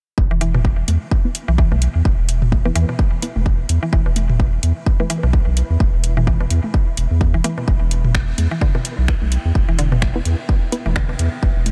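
Minimal techno at 128 BPM in E minor, sparse and cool, with a thick saturated sub bass pumping up front beside a punchy, tape-warm kick, a woody mallet-like synth pluck riff carrying chorus and tape echo, a booming analog drum machine's finger snaps and metallic hi-hats, electronic toms in diffuse delay, muted dub chord stabs under phaser and a filter sweep, and a blurred granular cloud pad entering at 1.3 seconds and fading in, in this short cut from a longer piece.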